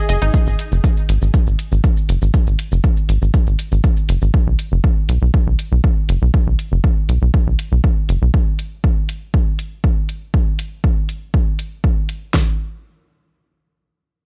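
Melodic techno with a cinematic, hypnotic mood, cut from a longer piece, where a tight, plucky sawtooth sequencer bass with tube saturation and sidechain pumping drives up front until 8.3 seconds, together with an overdriven deep house drum kit with a punchy kick and fat snare alongside metallic, layered electronic hi-hats and shaker, all in a dry, close mix.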